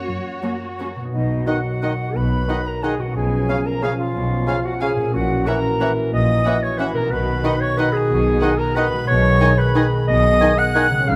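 Set in 3/4 with a flexible, rubato pulse at roughly 163-197 BPM, this sweeping, festive classical passage in B major is cut from a longer piece and unfolds over about 11 seconds. A mellow, ringing concert harp spins thumb-plucked arpeggios from the start, beneath a very quiet, veiled melody from muted violins, while muted cellos and a soft-edged muted double bass section carry the bass. A second muted violin line and close, con sordino violas fill the middle with lush, dark string texture, and a distant French horn section holds shadowy sustained chords. From 1.1 seconds the winds join: an airy, crisp flute group and a roomy solo clarinet add second lines, soon followed by a clear oboe and a background bassoon with soft attack. The harmony moves from F# to B, then through C#7/B, F#7/A# and back to B before settling on G#m/B, and a dry, close timpani stroke lands at 11.1 seconds. A wet recital-hall reverb gives the ensemble a spacious glow.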